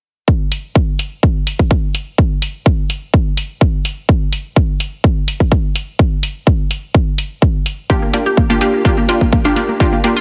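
A straight groove opens this emotional, bittersweet progressive house passage, cut from a longer piece, with a punchy, overdriven electronic kick arriving at 0.3 seconds and sitting up front. A layered electronic hi-hat joins just after, tape-warm and re-recorded in a small room, carrying a sidechain pump. For most of the passage the kick and hats hold the floor on their own. At 7.9 seconds, as the harmony settles on a Bb6 chord, two synths enter together. A glassy, crystalline wavetable pluck spins arpeggios colored by chorus, phaser and tape echo, while a lush, detuned sawtooth unison pluck fires bright stabs through a filter sweep, both pumping against the kick. The whole mix has light reverb and a heavily compressed radio sound.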